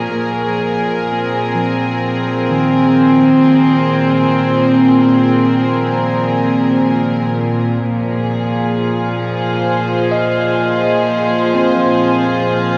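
A huge, dark wash of reverb surrounds this serene, spacious ambient passage, cut from a longer piece and moving at a slow 63 BPM in a straight 4/4. Up front, a studio string section holds sustained chords with a reedy, gut-string tone and light vibrato in a period style, its bowed sound lifted by shimmer reverb. Further back, a bright, clean tine electric piano fades in gradually with arpeggios, coloured by phaser, delay and shimmer reverb. The harmony rests on Bb7(no3) before shifting to Fm/Bb at 7.7 seconds, and at 8.3 seconds a calm, glassy harmonics texture enters, its slow-attack sine tones drifting in chorus and reverb.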